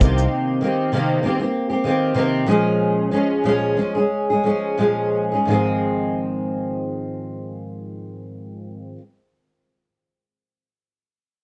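Pop with a carefree, easy-going mood, this short cut from a longer piece features a double-tracked, fingerpicked steel-string acoustic guitar sitting up front in a dry, close 1970s-style studio sound, its light sixteenth-note swing easing into a slowdown from 0.3 to 5.5 seconds as the chords move from Cm7 to Bbm7 before settling on Ab6 at 5.5 seconds.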